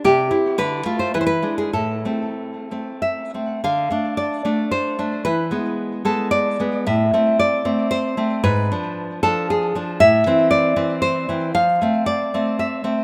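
A fingerpicked nylon-string guitar opens alone, moving through C, Dm and E7 to settle on Am within the first two seconds. This is a wistful, melancholic romantic piece for solo classical guitar in 3/4, played with a free rubato feel. At 3.6 seconds a new passage begins, stretching out over Dm, E and Am before a G#dim7 darkens the harmony. The music returns to Am and closes on F as the clip, cut from a longer piece, ends at 13.0 seconds. The guitar sits up front with a deep classical tone, finger squeak on the strings and a touch of tape echo. Light reverb surrounds it, and the rough home demo mix leaves the sound plain and unpolished.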